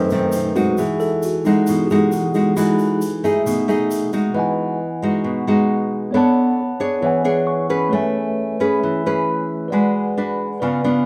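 A clean tine electric piano, heard through its built-in speakers, takes a solo over warm, fingerpicked, up-front classical nylon-string guitar as this romantic, relaxed bossa nova excerpt in E major opens at 134 BPM, while a grainy, bright, distant egg shaker sounds until 4.4 seconds. The piano adds a brief fill near 7.3 seconds as lush chords such as Emaj9, Bm9 and Amaj9 drift by under a light reverb.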